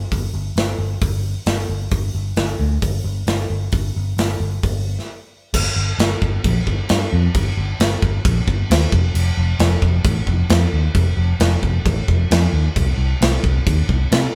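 Heavy and driving, this hard rock excerpt moves at 133 BPM in G minor, with a picked electric bass growling bright and amped through its low register while a big acoustic rock kit sits up front with a punchy kick, medium-tuned snare, hi-hat and bright crash cymbals. The two play live together in a stone room whose moderate reverb gives the sound some air, and a short break at 5.1 seconds leads into a new section at 5.5 seconds.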